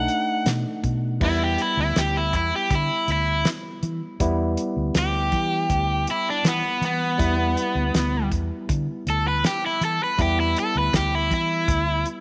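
Mournful and soulful, this straight-eighth soul blues excerpt moves at 80 BPM in E minor, opening on a B7#9 chord before settling onto Em at 1.2 seconds, where a bright, cranked overdriven guitar takes an up-front picked solo. Beneath it, a barky tine electric piano pushed lightly into overdrive through a combo amp supplies accompaniment, while a dark, foam-muted fingered electric bass sounds round and punchy. A damped 70s drum kit with a fat snare, tight kick, rolled-off top, crash and hi-hat sits dry under light studio reverb.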